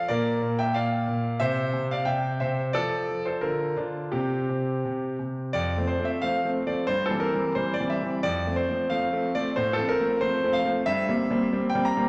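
A clear concert grand piano opens this cheerful, graceful classical-period sonatina at 0.0 s, playing solo in F major at 90 BPM in 2/4 with a rubato feel. The instrument sits up front, its deep bass and long sustain carrying through a span from F2 to Bb5. The harmony starts on Bb, moves through C and F to Bb/D, and then the chords drop away briefly at 4.1 s. A second section begins at 5.6 s, settling on F before passing through C/G, back to F, then F/A and C7/G. A wet recital hall reverb gives the performance a sense of space, and the recording stops at 12.1 s, cut from a longer piece.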